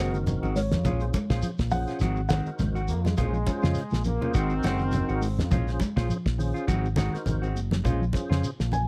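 A felt-muted upright piano opens this defiant, intense afrobeat excerpt in Bb minor at 103 BPM with a swung sixteenth feel, its soft, intimate melody carrying audible action noise over a clean tonewheel organ with slow rotary speaker, background guitar arpeggios washed in ensemble chorus, dark guitar stabs, and a round, punchy fingered bass up front. A dry, damped 70s drum kit with fat snare and tight kick arrives with grainy shekere and low-tuned, saturated congas as the harmony moves between Ab7 and Bbm7. A tight, bright trombone section plays a second line from 2.9 to 5.5 seconds, and the piano returns briefly near the end of this close, small-room 1970s-style recording.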